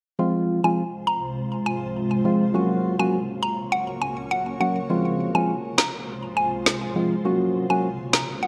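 A straight 4/4 dancehall groove at 102 BPM in F phrygian gives this bouncy, tough fragment of a longer piece its pulse, with a hollow, dark organ stab with chorus punching out accompaniment over Fm and Gb chords from 0.2 seconds. A round, woody synth pluck carries the melody through chorus, phaser and delay, while a cloudy, evolving granular pad with its own reverb holds sustained chords alongside. An up-front electronic snare with gated reverb arrives at 5.8 seconds, all set in a lush hall with bright 1980s-style digital production.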